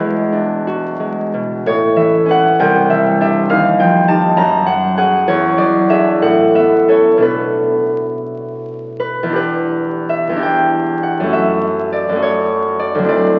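Heard through the crackle of a very old 78 rpm record and the wet reverb of a recital hall, this brief, mysterious and wistful classical fragment, cut from a longer piece, features a solo concert harp that is fingerpicked, ringing and up front. It moves in a rubato 6/8 at about 53-71 BPM, tuned to A4 = 445 Hz, through rich chords from E9 and Aadd9 to Bm7 before settling into E dorian at 9.4 s with Em7 and F#m7 until it stops at 13.4 s.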